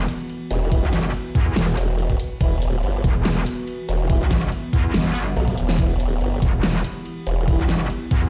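Chaotic and menacing, this heavy wobble dubstep cut from a longer piece moves at 142 BPM in a half-time feel with a light swing on the sixteenths, sitting in E minor over an Emadd9 chord. Two wobble basses dominate up front: a metallic, aggressive FM bass with distortion, overdrive and chorus that runs the full 8.3 seconds, and a detuned formant-sweep bass built from pulse and sine waves, chorused and overdriven, entering at 0.5 seconds. An overdriven dubstep kit with a huge snare, bright hats, ride cymbal and toms starts at 0.1 seconds, an overdriven, knocking electronic kick joins at 0.7 seconds, and a short drum fill breaks through at 5.4 seconds. In the background, an evolving wavetable pad holds morphing sustained chords through phaser, its own reverb and sidechain pumping, while a vintage classical-style brass ensemble with light vibrato adds stabs soaked in dub echo. The mix is dry and loud overall, though the whole recording carries the character of being played on a big sound system in a bare room.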